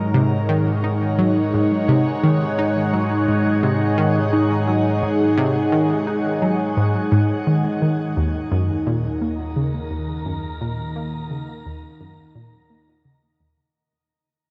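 Ambient, sequencer-driven space music in Eb minor, this excerpt moves at 86 BPM in a straight 4/4 with a mysterious, hypnotic mood. A swirling, airy analog pad sits up front, holding sustained chords with phaser and chorus, while a round, detuned analog pluck repeats a riff through chorus and analog delay, its tone carrying a filter sweep. Underneath, a mellow, warbling analog drone supplies the bass with a vintage, pulse-width-modulated character, chorus and tube saturation. The harmony rests on Ab7sus4 before shifting to Ebm at 8.2 seconds, where the drone fades out, a filter sweep works on the arpeggiated synth and the whole passage fades. A faint, breathy, wind-like tuned noise texture on a single high Bb enters at 9.0 seconds with its own reverb. The production is dark and bathed in a shimmering reverb with a long tail.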